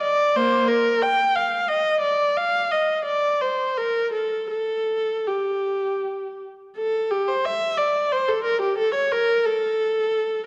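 In a free, rubato 3/4 that drifts between 78 and 92 BPM, this grave, solemn fragment of a baroque-style suite movement in G minor is carried entirely by one unaccompanied viola. Bowed close and up front, the rich viola sings from Bb3 to G5 with expressive vibrato, soft attacks and gliding portamento across its 10.5 seconds, and its opening phrase returns at 6.8 s. A moderate concert hall reverb surrounds the instrument, while the worn cassette tape adds a warbling pitch drift.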